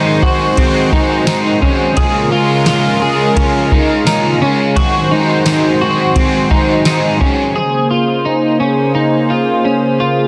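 Haunting and melancholic, this dream pop excerpt in Bb minor moves at 86 BPM, with a smooth, detuned analog pad holding sustained chords up front while a slightly broken-up electric guitar picks chorused, tape-echoed arpeggios, a biting overdriven guitar shimmers with harmonic tremolo and ensemble chorus before dropping out at 7.6 s, and a soft vintage rhythm box with a deep kick, crisp snare, ride and tambourine plays from 0.2 s, all bathed in plate reverb and a dense, heavily limited master as the harmony settles from Ab7 and Bbm7 onto a closing Bbm9.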